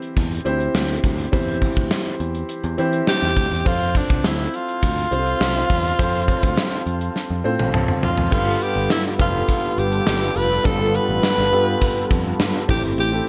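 1980s-style pop at 103 BPM with an urgent, moody feel, built on a deep, open concert grand piano, a punchy, up-front drum kit with bright cymbals and gated reverb, and a dark, round picked electric bass, before a raspy, gritty alto saxophone with vibrato, scooped notes and delay takes the lead at 3.1 seconds, a drum fill arrives at 7.2 seconds and a piano fill at 7.4 seconds, and a smooth, detuned analog pad with chorus settles in the background at 8.3 seconds as the chords move from C and F to G9 and Am7.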